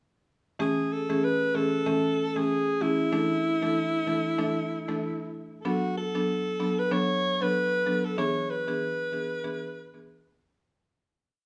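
A buzzing marimba and a clear alto saxophone enter together at 0.6 seconds, opening this short, romantic and breezy afrobeats piece with a lilting, swung sixteenth-note feel. Struck with medium mallets on hardwood bars, the marimba sounds woody, dry and airy, sitting up front as it plays syncopated chords through Amaj7, Dsus2, Bm7 and E7. The saxophone carries the melody as a punchy, pop-style solo built from hook-like motif phrases, its tone colored by vibrato and a touch of tape echo. Both parts stay close and present within a light, small-room ambience. The whole piece is a single chorus that fades out from 8.2 seconds to its close at 10.7 seconds.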